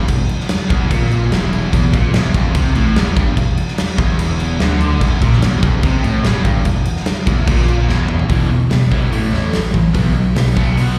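Aggressive, driving hard rock, cut from a longer piece and heard as a live gig through the venue's PA with recital hall reverb. An overdriven semi-hollow guitar with phaser and slapback echo carries the riff over a scooped, high-gain guitar also playing the riff in the background and a growly, amped picked bass. An up-front acoustic kit with a punchy kick, medium-tuned snare, crash, hi-hat and toms rings in a bright stone room, and a drum fill at 7.9 seconds leads into a second section at 8.3 seconds that moves through E5, A5 and B5.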